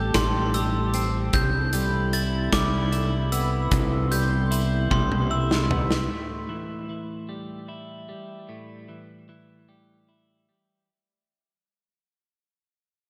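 A big arena sound bathed in lush hall reverb frames this brooding, cathartic post-rock passage in a slow 6/8, where a hollow, airy pad with chorus holds sustained chords in the background, a sparkling glockenspiel with brass mallets and a twangy twelve-string electric guitar both ring out arpeggios through tape echo, a growly fingered bass sits up front, and a huge acoustic drum kit with a punchy kick plays a fill from 4.9 to 6.1 seconds before everything drops away except the guitar, which fades out alone until 10.9 seconds.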